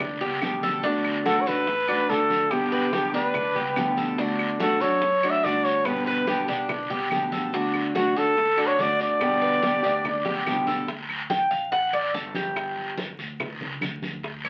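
Relaxed and danceable, this Cuban son and guajira groove in straight 4/4 sounds like a very old 78 rpm record, with vinyl crackle and a wet small room around it. A breathy trumpet sits up front from 1.3 seconds, carrying a mellow, whispered, intimate melody with vibrato and a soft attack in a pop style. A bright, fingerpicked nylon-string guitar, also up front, supplies classical-flavoured accompaniment with audible finger squeak. A Cuban tres weaves metallic, picked arpeggios on double strings, and a thumpy, gut-strung upright bass plays pizzicato in the background. Woody claves, tight high-tuned bongos played with soft hands, damped low-tuned congas and a raspy, saturated guiro fill out the percussion. After the trumpet drops out at 10.4 seconds and a drum fill, the guitar stops at 10.9 seconds and the tres takes a solo as the passage is cut from a longer piece.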